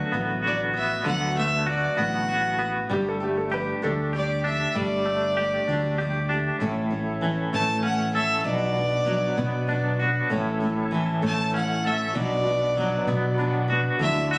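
Hopeful and nostalgic, this short folk rock and heartland rock excerpt moves at an unhurried 65 BPM in a straight 6/8, heard as if captured on a phone in a small club room with its reverb around the players. A full-bodied, picked jumbo acoustic guitar, a round, punchy fingered bass and an up-front, twangy electric guitar with tremolo carrying the riff all play from the start, while a brilliant, woody upright piano adds a short second line that stops at 4.1 seconds. A clear fiddle with light vibrato and an earthy, smooth top enters at 0.5 seconds to take the melody in a high register, its bowed line trailed by analog delay. At 6.6 seconds the harmony moves from D6 and Gsus2 to a pattern alternating A and Bm, and a reedy tonewheel organ slips in behind with sustained chords through a slow rotary speaker. A mellow reed electric piano with medium tremolo joins very quietly at 10.3 seconds and adds a brief fill near the close.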